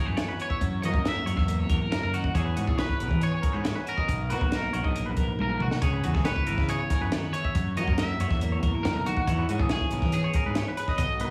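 Set in straight 4/4 at 138 BPM, this playful, wistful math rock and midwest emo excerpt pairs a twangy lead guitar melody bathed in lush chorus and analog delay with phaser-tinted twelve-string accompaniment and a second clean guitar's bright arpeggios. All of it is anchored by round fuzz-overdriven fingered bass and a dark, up-front cocktail kit with a high-tuned snare and punchy kick. The excerpt cycles through C#m7, F#7, E6 and Bmaj7, with a drum fill at 5.4 seconds, in a light studio reverb.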